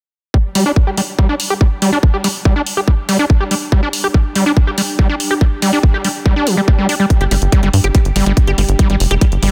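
A squelchy, screaming acid line with distortion, chorus, delay, sidechain pumping and a filter sweep drives this psychedelic trance cut at 142 BPM over an up-front electronic kick and tape-tinged hi-hat, while a warbling, lo-fi pad fades in behind from 2.8 s and a tight, punchy sequencer bass arrives at 7.2 s under a dense, heavily limited master.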